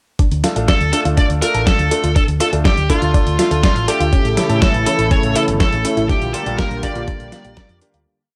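A bittersweet, nostalgic italo disco piece opens with a nasal analog pluck arpeggio tucked in the background, colored by chorus, phaser and tape echo, alongside a thumpy four-on-the-floor electronic kick up front and a gritty sampler-style kit playing closed hi-hat and snare in a disco machine beat, soon joined by a dark, tube-saturated fingered electric bass galloping in sixteenths, clear off-beat grand piano stabs and a bright, distorted high-gain lead guitar hook with analog delay, while a smooth, chorused analog pad adds sustained chords from 4.1 seconds before the track fades out from 5.4 seconds in a dry, gritty mix.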